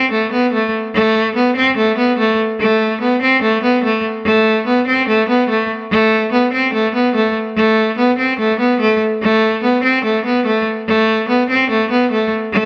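Tense and menacing, this hip hop fragment, cut from a longer piece, moves at 145 BPM in 4/4 with a half-time feel and is tuned to A4 = 441 Hz. A single bowed cello carries it alone from 0.0 to 12.7 seconds, sitting up front between A3 and C4 with a bright, biting, intense tone and light vibrato, softened by a low-pass filter. Light reverb and a small room ambience surround the playing.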